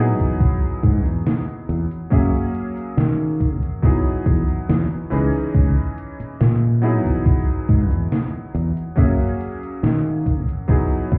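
Vaporwave with a faded, dreamy mood, this short excerpt moves at an unhurried pace in a straight four-beat feel, cycling through lush extended chords such as Emaj9, F#9 and C#m9. A bright, clangy vintage electric grand piano carries the accompaniment, its cutting tone softened by subtle chorus and analog delay. A fretless electric bass sits up front with a warm, direct sound, present from the very start. Entering at 0.2 seconds, a thumpy, overdriven electronic kick drum joins a gated 80s digital drum machine playing cabasa, hi-hat and snare. The machine's snare is splashed with gated reverb, and the machine itself is gritty and placed forward in the mix. The drums carry a boxy small-room character, while the overall sound is muffled as if heard through a wall, with a club-like ambience and shaped EQ giving the piece its hazy, half-remembered quality.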